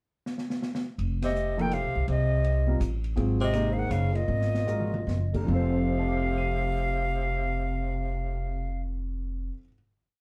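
A drum fill on an open jazz kit opens this short, complete modal jazz piece in 3/4, swung and moving at roughly 141-165 BPM with a spiritual, hypnotic mood in F mixolydian. The upright bass enters at 1.0 seconds with a woody, pizzicato two-feel on steel strings, and a band accent at 1.2 seconds brings in the breathy, bright concert flute with a straight-toned, tongued motif of call phrases, slightly unsteady and up front, while the tenor saxophone shadows it below with a vibrato-laden harmony line, mostly in thirds, full of soft attacks and scooped notes. The grand piano joins at 1.6 seconds with syncopated comping in quartal voicings, intimate and natural, its action noise audible. The drums stay dark and smooth, with a boomy kick, a medium-tuned snare and a stick pattern on the ride, their top end rolled off. Over the F7sus4 and Ab7sus2 harmony the band slows down from 3.2 seconds, with a second drum fill before settling on a final F chord, all heard from further back in a club room with a short, wet reverb.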